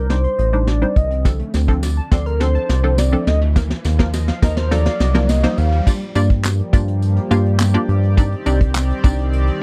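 A round, deep analog bass pumps up front beside a dark, brushed vintage drum kit in this bittersweet, energetic dance-pop excerpt at 104 BPM in G minor, where a mellow horn-like synth lead, a hollow square pluck, a glassy wavetable pluck arpeggio, a faint jingly tambourine and a very quiet riser build up over a filter sweep and drum fill until the drop at 5.9 seconds brings in a shimmering pulse-width pad, all in a dry, close 1970s-style studio sound.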